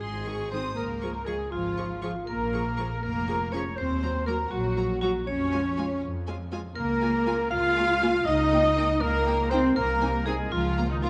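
A bright, metallic vibraphone struck with hard mallets and a rich violin section carry the melody of this playful, mischievous film cue in 6/8, while a mellow clarinet, a soft-edged flute ensemble, a warm cor anglais and a second, more distant line of violins weave countermelodies around them. A mellow French horn section holds sustained chords, a clear double bass section and a lush cello section ground the bass, and a close, vibrato-rich viola section joins the accompaniment at 0.3 seconds. The orchestra sits in a moderate concert-hall reverb, giving this short, whimsical passage a magical, storybook glow.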